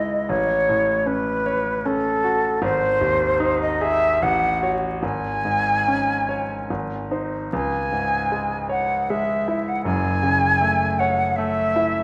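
An airy concert flute carries the melancholic, elegiac melody with vibrato and expressive tongued phrasing, sounding distant yet up front across this 12-second passage cut from a longer romantic classical duo. A bright, polished grand piano with deep bass accompanies in a rubato 3/4, its harmony moving from F#m/A through G# to a closing F#m7. The pair sit in a reverberant recital hall, with vinyl crackle lending the sound an aged patina.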